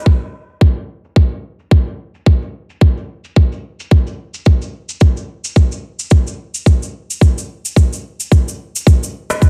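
A swung 16th-note groove at 109 BPM in 4/4 drives this meditative downtempo excerpt, where an up-front, tight, overdriven electronic kick and a gritty, low-pass-filtered cabasa with the air of a large room play through to 9.5 seconds, under a filter sweep until 8.9 seconds, while a crisp, high metal-shelled darbuka sounds briefly at 9.3 seconds, all in a dry, dense and heavily limited modern mix.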